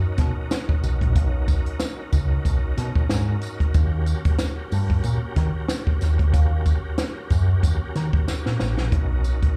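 A dark, round electric bass sits up front in this driving, hypnotic funk excerpt, picked and pushed through an envelope filter for an amped tone. Beside it, a compact cocktail drum kit plays dry and up front, with a high-tuned snare, hi-hat and punchy kick, at 93 BPM in 4/4 with a light sixteenth-note swing. Further back, an overdriven tonewheel organ holds sustained chords, its gritty, thick tone carrying second-harmonic percussion, chorus vibrato and a fast rotary speaker. A jingly tambourine sits low in the mix. The harmony moves from Bmaj9 to D#7#9 at 3.7 seconds, and a drum fill from 8.3 seconds leads back to Bmaj9 at 8.9 seconds. The whole sounds like a live gig heard through a club PA, wrapped in small-room ambience and club reverb.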